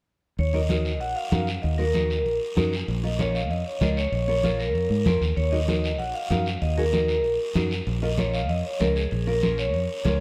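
A brisk, straight 4/4 cumbia groove at 192 BPM drives this danceable, fiery fragment in Eb minor, cut from a longer piece and moving between Ebm and Bbm chords. The vibraphone carries the melody from 0.4 seconds with a metallic, ringing tone, a slow motor vibrato and a vintage, band-limited color. Beneath it, a fingered electric bass sits up front with a punchy, foam-muted sound, while soft-handed, medium-tuned congas ring in the background and a raspy guiro adds texture. A dark, full-bodied nylon-string guitar joins at 0.5 seconds with fingerpicked accompaniment. Moderate plate reverb places the ensemble further back in the room, giving the whole passage a lively but slightly distant character.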